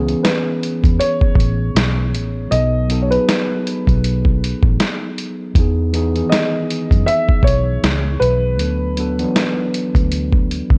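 A mellow tine electric piano, low-pass filtered and sounding as if through its built-in speakers, opens this hazy, nostalgic lo-fi hip hop excerpt at 79 BPM alongside a round, punchy, foam-muted fingered electric bass, moving through C#m7, B7, Emaj7 and D6 with a 58% swing on the 16ths. A compressed, pitched-down sampler-style drum kit sits up front with a thumpy kick, medium-tuned snare and hi-hat, muffled as though re-recorded in a large room. From 0.2 to 9.3 seconds, a dark, woody, intimate upright piano carries the melody through a low-pass filter and tape echo, its action noise audible, and the whole mix stays dry with its top end cut off above 10.5 kHz.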